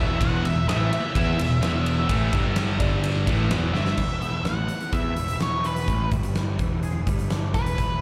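Cathartic and anthemic, this quiet-loud alternative rock passage, heard live through a club PA with roomy reverb, opens with a dark octave-fuzz lead guitar melody carried on slapback and tape echo over a growly, overdriven picked bass, a huge, pumping arena drum kit with a fat snare and bright cymbals, a thick fuzz riff guitar and a scooped high-gain guitar in the background, until a drum fill at 3.7 seconds hands off at 4.0 seconds to a twangy, compressed clean guitar playing chorus-tinged arpeggios beneath the lead.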